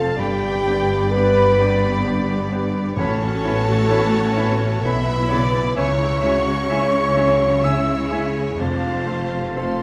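A mellow French horn section holds sustained chords at the front of this tender, hopeful cinematic passage in A major, cut from a longer piece and moving in a rubato 3/4 at around 64 BPM. A clear, distant violin section carries the melody, while a richer violin section, a present oboe with light vibrato, a close-miked clarinet and an airy, hollow concert flute weave second lines around it. A felt-muted upright piano with audible action noise and a viola section with expressive portamento fill the accompaniment over lush cello and smooth double bass sections, with dry calf-headed timpani sounding only from 3.0 to 4.3 s, all set in a wet scoring-stage reverb.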